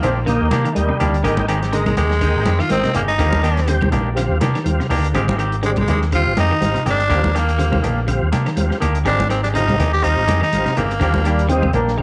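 A raspy, growling tenor saxophone leads this defiant, driving afrobeat excerpt from the first beat. Punchy trombones open with it and return at 11.3 seconds, over a round, up-front fingered bass, a muffled lo-fi soul kit, ringing congas and two clean electric guitars: one picking dark arpeggios through subtle chorus, the other playing twangy stabs with tremolo. A smooth tonewheel organ through a slow rotary speaker and faint woody claves join at 0.3 seconds, all set in spring reverb over a light 16th-note swing between Ebmaj7 and Abmaj7.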